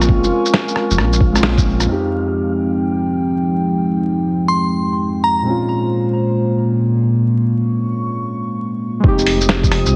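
Future garage at 134 BPM in F minor, with a swung sixteenth feel and a nocturnal, melancholic mood, cut from a longer piece. A dark analog pad holds sustained, moody chords throughout, moving between Bbm7 and Fm7, while muted felt-like synth keys play a soft, intimate accompaniment with vintage sampler grit and a filter sweep from 1.9 to 9.0 seconds. The opening pairs a thumpy, muffled electronic kick and a pitched-down, lo-fi sampler-style kit of snare, hi-hat, rim click, shaker and crash with a deep, rumbling detuned saw bass and a breathy, wind-like noise texture in the background, all marked by a band accent at 1.4 seconds. The drums, bass and texture then drop out, and a crystalline FM bell rings out a brief melody around 4.5 seconds over the pumping pad and keys before the groove returns near 9.0 seconds. The sound is heavily compressed and radio-like, dusted with vinyl crackle, rolled off in the highs, and set in a moderate digital room.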